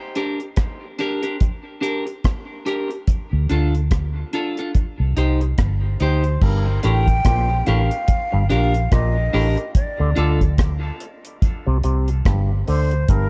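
A round, foam-muted electric bass sits up front from 3.3 s in this meditative, hypnotic dub reggae excerpt in G minor at 72 BPM with a swung feel, joining a dry, dark reggae drum kit with a tight kick and a clean, scooped electric guitar washed in lush chorus and dub echo, before a breathy jazz flute with vibrato carries the melody through dub echo from 6.0 s and an overdriven, stringy auto-wah clav riff enters at 6.4 s, set within a studio reverb.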